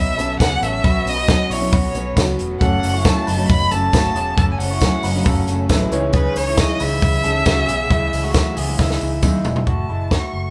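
A rich, smooth violin carries the melody from the very first moment, sounding distant and bowed with an even vibrato, over a restless, bittersweet bed of jangly indie pop at 136 BPM in a straight 4/4. Alongside it, an electric guitar through a small old amp plays bright, twangy, slightly broken-up arpeggios, while a dark, full-bodied fingerpicked steel-string acoustic guitar sits in the background. Beneath them, a vintage muted fingered electric bass gives a round, foam-muted low end, and a woody upright piano and a lush, close studio string section holding sustained chords sit very quiet in the blend. From 0.2 seconds a compact cocktail drum kit stands up front, dry and natural, with a punchy kick and a high-tuned snare, joined by a faint, jingly tambourine. The harmony rests on C#madd9 before a drum fill at 8.8 seconds turns it toward F#m at 9.7 seconds, all under light reverb that gives the feel of a band playing live in one room, cut from a longer piece.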